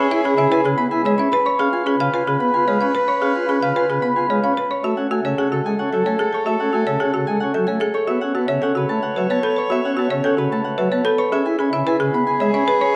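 Classical minimalist pattern music in 3/4 at 111 BPM, this bright, propulsive excerpt in F# minor is cut from a longer piece, with an up-front Celtic harp carrying the ringing, fingerpicked melody while a clear, softly attacked soprano saxophone sings a second line with classical vibrato. A pipe organ's light, sparkling flute stops supply romantic-voiced accompaniment until 12.6 seconds, and a folk marimba struck with hard mallets adds woody, dry, percussive arpeggios. The chords move from E through C#7, F#m7 and Aadd9 back to E, captured with close, detailed microphones in a wet recital hall.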